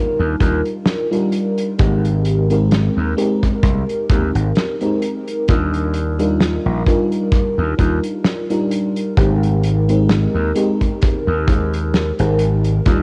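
Dreamy and nostalgic, this vaporwave fragment drifts along at a slow, lightly swung pace, cut from a longer piece and sounding as though it were played back from a worn cassette with warbly pitch drift and light reverb. An FM electric piano with a soft pad layer opens at 0.0 seconds, its full-bodied, mellow tone bathed in lush chorus and tape echo as it moves between Ebmaj9 and Abmaj9 chords. A gritty slap bass joins at 0.2 seconds, bright and punchy with overdrive, sitting up front in the low register. From 0.4 seconds a tight kick drum and a loose indie kit of hi-hat and fat snare settle in, both with a small-room, rolled-off character, the kick placed forward in the mix. The result pairs the hazy, decaying keys with a bass that carries a more aggressive edge.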